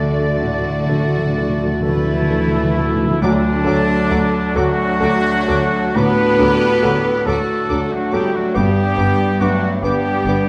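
A concert grand piano leads this lush, lyrical romantic movement for piano and orchestra, its polished, present tone reaching into a deep bass while it carries the melody in a slow, rubato 12/8 flow. A distant symphonic violin section also carries the melody high above. Clarinet, oboe, a small airy flute group and a second, more focused violin section weave second lines in the background, while a mellow bassoon and a very quiet viola section add accompaniment, and a horn section holds soft sustained chords. Cellos and a rich double bass section anchor the bass, and timpani with soft mallets play a round fill through the opening 3.2 seconds before dropping out at 4.5 seconds. A bright trumpet section enters up front with stabs at 1.8 seconds, and the harmony moves from D to G at 8.6 seconds, all set in a dark production bathed in recital-hall reverb, a fragment cut from a longer piece.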